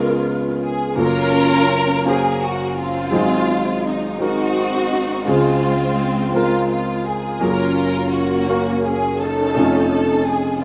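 Hopeful and uplifting, this short gospel passage, cut from a longer piece, moves in an unhurried, straight 6/8 lilt. A bowed string ensemble carries the melody from the opening moment, its lush tone shaped by expressive vibrato and gliding portamento, with a touch of tape echo trailing behind it. A grand piano accompanies throughout, spanning a broad range from deep bass notes to a bright upper register; its sound is intimate and a little boxy, with long sustain and the audible noise of its action close to the ear. Rich seventh chords shift gently under the tune, and at 7.4 seconds the harmony moves into a new section that ends on an altered dominant chord around 9.6 seconds. A light studio reverb surrounds the rough, home-demo mix, giving the performance a warm, personal feel.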